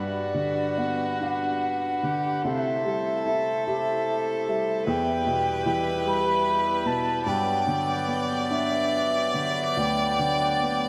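A lush hall reverb soaks this dreamy recording, a short passage cut from a longer Celtic slow air in 6/8 with uneven, rubato beats and a pastoral, tender mood. A wooden flute carries the melody with a pure, woody tone, vibrato, a crisp attack and lifted highs, its line touched by delay. Beneath it a single bowed fiddle plays a second line, rich and smooth with light vibrato, sitting up front with its own delay. A warm upright piano, present and close, supplies the accompaniment through an analog chorus, while a pedal harmonium breathes sustained chords in a reedy, mellow, vintage, band-limited voice. All four parts play together across the full 10.9 seconds, moving from Gmaj7 through C6 and Em before returning to Gmaj7 at 7.3 seconds.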